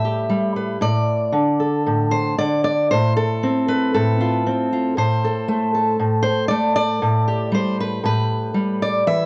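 Folk excerpt for solo fingerpicked steel-string acoustic guitar, reflective and melancholic at a rubato 116 BPM in 4/4, the warm, up-front guitar ranging from A2 to E5 over chords that drift from G/A to D5/A, F/A and back to G/A at 7.0 seconds, all under light reverb and the worn, warbling pitch drift of old cassette tape.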